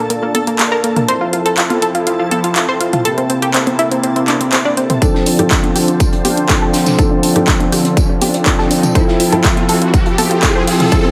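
A felt-muted upright piano, mellow and intimate with audible action noise, plays up-front stabs with tape echo from 5.0 s, where a punchy electronic kick and a loose, rolled-off indie kit with snare, hi-hat and tambourine join for the build-up of this euphoric, uplifting progressive house excerpt at 122 BPM. Underneath, a detuned supersaw swell holds evolving sustained chords, a round, bright analog pluck spins chorused arpeggios with sampler grit, and a dreamy reversed granular texture glimmers very quietly through the opening 5.0 seconds, all over Bbmaj7, Fmaj7, C7 and Dm7 harmony. A layered big-room kit with handclaps and hats, dry overdriven electronic congas and toms, sidechain pumping on several parts, a lush hall reverb and a background riser entering at 7.0 s fill out the mix.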